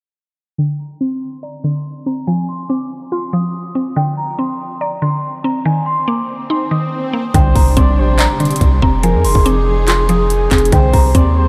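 A half-time trap groove of handclaps, metallic hats and a hard-clipped kick arrives at 7.3 seconds in this brooding, melancholic hip hop excerpt, joined by a deep, up-front 808-style bass. Before that, from 0.6 seconds, a delicate, bell-like celesta melody floats over a woody, percussive synth pluck as a filter sweep runs, and a very quiet electronic swell and impact mark the turn. The second half adds a smooth, gliding portamento lead and a lush, bowed string section holding dark chords, with the mix soaked in a dreamy, cavernous reverb.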